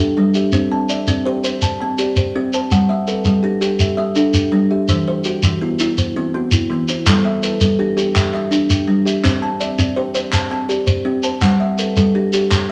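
A lilting 12/8 pulse with a straight feel drives this southern African traditional piece, built as an mbira-style interlocking cycle and cut from a longer performance. Two kalimbas play arpeggios from the first moment. The louder one sits up front with a short, woody, thumbnail-plucked tone from a solid board in a boxy small room, while the quieter one rings out bright from a hollow box. A grainy, mellow shekere joins almost at once, also close and present, and a crisp group handclap enters at 7.1 seconds, sounding distant in a large room. The harmony turns over a simple cycle of C, G and E minor, giving the rippling, warm mood a gentle sway under a moderate studio reverb.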